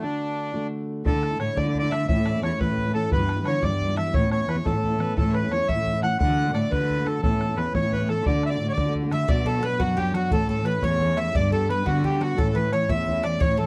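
A reedy, up-front accordion carries the melody of this lively, rollicking Celtic jig in D major at 117 BPM in 6/8, with a clear, distant fiddle adding a bowed second line in the background with light vibrato and a slapback echo, while a full-bodied jumbo steel-string guitar is fingerpicked beneath. At 1.1 seconds a dark, expressive cello enters on the bass line with vibrato and portamento, alongside a boomy, open bodhran. At 9.1 seconds a very quiet, metallic Irish bouzouki joins with a picked second line as the music moves to a new section built on Bm, A and G, all captured in a dry, close 1970s-style studio sound.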